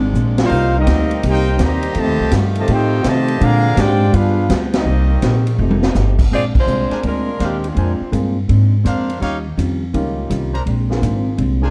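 Swinging and brassy, this big band swing passage, cut from a longer piece, opens with a tight trumpet section carrying the melody over a close-miked trombone section's second line, soft sustained chords from a very quiet saxophone section, a woody pizzicato upright bass up front, a clean, compressed hollow-body electric guitar in the background and a roomy drum kit with dark cymbals and a punchy kick; a saxophone section rich with vibrato takes over the melody at 6.3 s, and a warm upright piano and smooth-topped trumpet stabs join at 6.9 s, all set in a shadowy production with light reverb.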